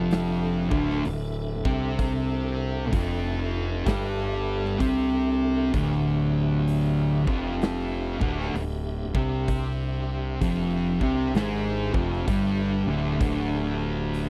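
A compressed, up-front fuzz guitar grinds out a riff over a single D minor chord, joined by a thicker picked fuzz guitar and a growly, overdriven fingered bass in this hypnotic, ominous stoner and doom metal excerpt at 64 BPM in 4/4 with a swung eighth-note feel. A big acoustic rock kit with a punchy kick and medium-tuned snare joins at 0.1 s, while a piping tonewheel organ with key click, chorus vibrato and a slow rotary speaker holds chords in the background. The sound is dry and close, like a 1970s studio recording.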